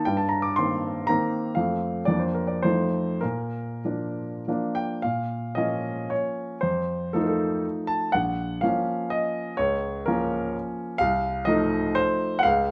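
A polished, up-front baby grand sits in light reverb, its tone warm and present across a register that reaches from deep bass to bright upper notes. This proud, graceful romantic classical dance in triple time moves with dotted rhythms and a free, rubato feel, the solo piano carrying it alone. At 5.0 s the harmony takes a darker turn, and this fragment of a longer piece breaks off at 12.7 s.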